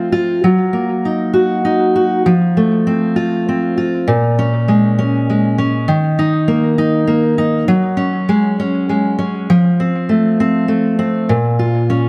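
A full-bodied, up-front fingerpicked steel-string acoustic guitar plays alone through this dramatic, aching pop fragment in Bb minor at 66 BPM in a straight 6/8, its tape echo blooming into a moderate echo-chamber reverb as the harmony moves from Ebm/Gb and F into a second passage at 4.1 seconds built on Bbm7, Eb5 and Gbsus2 before settling on Bbm at 11.3 seconds.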